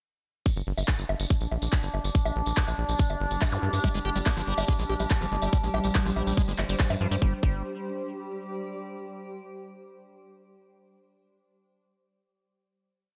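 A short, driving psychedelic trance piece in G minor at 142 BPM opens with a tight, up-front four-on-the-floor electronic kick, crisp programmed hats, claps and high bongos from a tape-tinged dance kit, and jingly hand-played tambourine sixteenths, soon joined by a punchy, saturated rolling sixteenth-note sequencer bass and a held high drone of ring-modulated, chorused overtones with sampler grit and pumping, while a blurred granular cloud pad of slowly shifting chords drifts in at 2.8 s, a very quiet zap marks a transition, a squelchy, resonant acid line with phaser and tape echo enters at 3.8 s, and the groove gives way to a final chord at 7.2 s.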